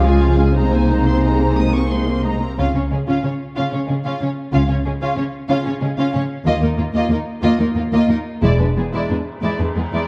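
Cinematic and soaring with an adventurous spirit, this 122 BPM excerpt in a straight 12/8 feel and Db major features distant, lush violins carrying an expressive vibrato melody over a second violin line with soft attacks and portamento and warm violas, while a clear solo clarinet line lasts only until 2.0 seconds and dark, roomy French horns hold sustained chords in the background until 2.4 seconds, as woody, up-front cellos and a smooth double bass section, which stops at 8.6 seconds, anchor the harmony moving from Db through Ebsus2 to an E7 in a moderate scoring-stage reverb.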